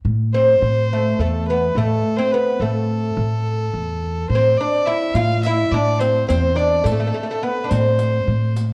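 A pizzicato upright bass opens this soulful, hypnotic fragment of a Turkish makam ensemble piece in 9/8, quickly joined by an up-front, plectrum-plucked fretless oud carrying the woody melody and a single bowed violin with a biting, nasal tone and light vibrato adding a second line above it. At 5.2 seconds a riq with bright jingles enters in the background. The whole recording sits in light reverb and carries the warbly pitch drift of worn old cassette tape.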